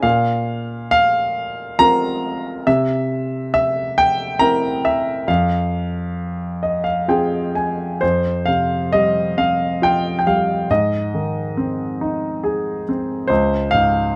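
Classical solo piano in F minor at 68 BPM in a rubato 3/4, this reflective, melancholic excerpt features an intimate, up-front grand piano with audible action noise ranging from Db2 to Bb5 in light reverb, moving through chords from Bbsus2 and C7 to Fm before a piano fill at 6.2 seconds leads into a second section at 8.0 seconds that passes through Fsus2 and Ab to Db.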